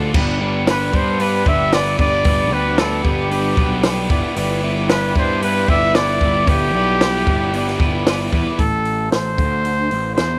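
A lightly reverberant, moody indie rock excerpt at 114 BPM, where a breathy, whispered trumpet with tape echo carries the melody up front over a tight, punchy cocktail drum kit, a growly fuzz bass, a slightly broken-up lo-fi guitar riff with subtle chorus, a bright high-gain guitar drenched in lush chorus and a very quiet detuned analog pad, moving from G to Em7/G before the pad and distorted guitar drop out near 8.6 seconds as the harmony shifts to Am.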